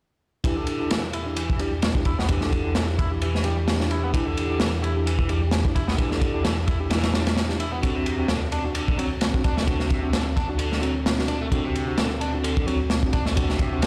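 Energetic and swaggering, this breakbeat excerpt in E minor runs at 130 BPM with a 16th-note swing, as a crunchy, saturated drum kit of tight kick, medium-tuned snare and dark ride cymbal sits up front beneath a biting, double-tracked overdriven guitar riff with tape echo, worn and slightly out-of-tune tine electric piano stabs under a filter sweep, and a warbly, nostalgic lo-fi pad of detuned sustained chords pumping against the beat, all moving from Em7 to D7 at 7.8 seconds in a large, bare-room reverb.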